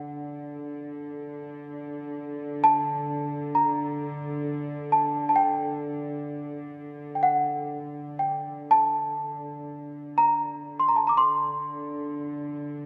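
A small celesta and a dark string section sound together from the opening moment of this solemn, mournful Caucasian folk lament, a fragment cut from a longer piece. The celesta carries the melody up front, high in its range between F#5 and D6, its bell-like, delicate tone shaped by hard felt hammers and a vintage, band-limited sweetness. Beneath it, the bowed strings hold a low D3 drone, sounding distant and reedy with a gut-string, period-style colour and light vibrato. The feel is rubato, drifting loosely around 59 to 67 BPM in 4/4. A wet recital-hall reverb with a 1.6-second decay gives the whole a church or concert-hall resonance through to the close at 12.9 seconds.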